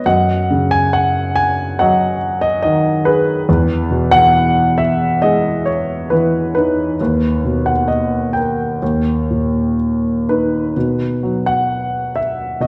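A dark, mellow grand piano opens this brief classical passage alone, playing a lyrical solo line with free, rubato timing at a slow pulse around 59 to 72 BPM in 4/4. The mood is melancholic and wistful, and the harmony moves through B69 over F#, E, D# augmented, D# and finally B across roughly 12.7 seconds. The instrument's worn, intimate character sits up front, with the clatter of its action audible beneath the notes, spanning from D#2 up to G#5. A wet recital hall reverb with a 1.6-second decay surrounds the piano, lending the dark, warm production a gentle glow. Cut from a longer piece, it feels like a private, reflective moment overheard.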